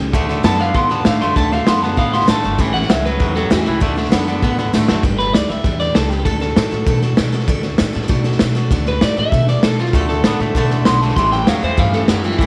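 A slightly broken-up, lo-fi electric guitar carries the melody through tape echo in this rowdy, upbeat rockabilly excerpt, with a clean electric guitar solo heard over the first 5 seconds. A scooped, twangy electric guitar riff drops out after a drum fill at 5.0 seconds and returns at 9.9 seconds, while an up-front garage drum kit with a punchy kick and a rolled-off top drives the beat. A thumpy, woody pizzicato upright bass on gut strings and a full-bodied steel-string acoustic guitar sitting in the background fill out the sound in a small, lightly reverberant room.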